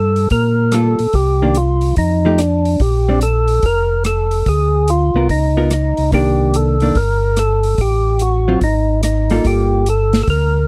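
Two tonewheel organs open this smoky, late-night soul jazz organ trio excerpt together: a fat, lightly overdriven, percussive lead with third-harmonic percussion and vibrato carries the swung melody, while a round, dark, clean bass voice with key click sits up front, both through a slow rotary speaker. A big-band drum kit with an airy, polished sound, a medium-tuned snare and a punchy kick swings on hi-hat, rim click and snare from 0.2 seconds, and a compressed, picked hollow-body electric guitar adds shadowy accompaniment from 0.7 seconds. The close, dry 1970s-style studio sound frames rich minor-ninth and altered harmonies that move from Gm9 and return to it by 9.4 seconds.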